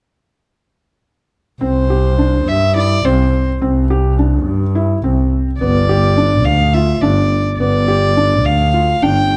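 Playful and shimmering, this brief contemporary instrumental excerpt in C major moves at 210 BPM in a straight 7/8, where a soft-attack, floating sul tasto violin sings the melody over gentle arpeggios from a felt-muted upright piano with a mellow, vintage tone and a focused, bowed double bass with vibrato, all three entering at 1.6 seconds within a moderate recital hall reverb as the harmony moves from C5 to G7(no3).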